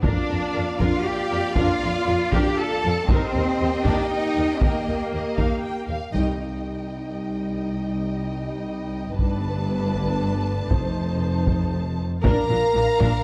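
A cinematic, epic orchestral film score in 3/4 at 118 BPM, dramatic and relentless, where close, dry taiko drums struck with hard sticks drive lush bowed strings: two violin lines, one expressive with portamento and the other soft-edged and smooth, over background violas, rich cellos and a clear, focused double bass section, while mellow French horns hold sustained chords. At 6.1 seconds the band lands an accent as a very quiet timpani touches C3, and at 12.2 seconds a distant, pure silver flute adds a brief second line on Bb5. The chords move from Bb/F through Eb, Cm, Gadd9 and F7 to Bb, all within a moderate scoring-stage reverb, and the recording is cut from a longer piece.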